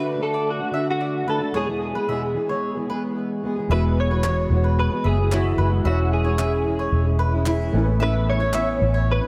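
A clean, compressed electric guitar carries the melody through ensemble chorus and diffuse ambient delay, over a full-bodied, double-tracked fingerpicked steel-string acoustic and woody mandolin arpeggios in this easy-going, carefree acoustic pop cut from a longer piece, moving at 111 BPM in a straight 4/4. At 3.7 s, as the harmony moves from D and E into Eadd9, C#m/E and Aadd9, a round, punchy, foam-muted electric bass sits up front and a boxy, slightly detuned upright piano enters very quietly, with crisp, close group handclaps joining at 4.2 s. A moderate plate reverb soaks the whole mix in a dreamy haze.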